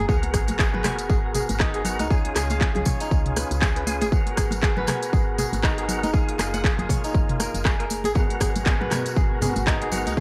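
A driving, swung 119 BPM afro house groove in G# dorian, cut from a longer piece, opens on a drop where a very quiet sub drop marks the impact, a punchy, up-front electronic kick and a house kit of handclaps, crisp hi-hat, rim click and toms pulse through cassette tape, background congas and a jingly tambourine fill out the percussion, a bright, ringing fingerpicked kora plays tape-echoed arpeggios, a lightly overdriven organ with key click and fast rotary speaker punches stabs over G#m7, C#, and F#maj7 chords, a woody, round FM bass pumps in the background, and at 8.2 seconds a very quiet deep djembe with metal rattles joins while a smooth, detuned analog pad with chorus returns, all in a gently reverberant home-cassette sound.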